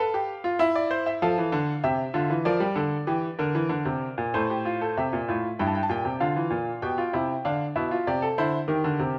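In a lively triple metre at 97 BPM with a straight feel, this short cut from a longer baroque-style three-part fugue for solo grand piano moves with a joyful, classical spirit. The concert grand sounds bright and brilliant yet slightly worn, sitting present and up front with deep bass, its range spanning G2 to A5 inside a moderate stone-room reverb. Its harmony travels through F and C7 before a second section from 5.0 seconds passes through Dm and G7/B to arrive on C, then turns to Cm7.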